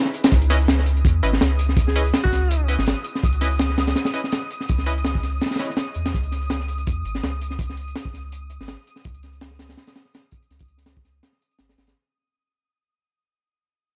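A crunchy, saturated breakbeat kit drives this raw, frenetic drum and bass and jungle cut at 165 BPM in C# minor, its punchy kick, high-tuned snare and hi-hat sitting up front with a gritty, dark tone and a rolled-off top, swung on the 16ths. After a brief opening break, a deep, round dub sub bass arrives at 0.3 seconds, soft and sustained beneath the drums while a filter sweep works on it throughout, and the whole passage fades out from there. Nasal, band-passed chord stabs built from detuned sawtooth tones flash over a C#sus2 harmony until 5.7 seconds, carrying chorus and dub echo. A twinkling granular texture with an octave-up shimmer swells in slowly high above and lingers in its own reverb. For a fleeting moment around 1.9 seconds, a warm alto saxophone offers a short, jazz-style solo phrase with vibrato, trailed by dub echo, all set in a small, dry room with a gritty hardware character.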